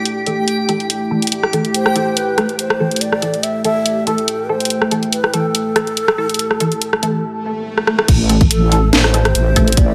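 A swung, half-time groove from a garage drum kit with a cracking snare and filtered hats and cymbals drives this brooding, heavy deep dubstep excerpt, set over a deep, warbling dark ambient pad and a reversed, dreamy swelling texture. Muted, full-bodied dub chord stabs with phaser and echo sit beneath a breathy low ney melody that enters at 1.7 s, its reedy vibrato trailing into dub echo. An electronic swell and a drum fill lead into the drop at 8.1 s, where a tight electronic kick arrives alongside a detuned, sawtooth wobble bass pushed up front.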